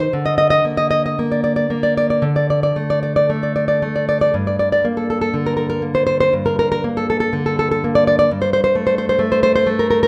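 Romantic solo classical guitar music, wistful and passionate, unfolds in a flexible rubato as a dark, fingerpicked nylon-string guitar sits up front in a moderate recital-hall reverb, moving through chords from Bbadd11/D to Gm and settling on Gsus24 at 8.3 seconds in this short cut from a longer piece.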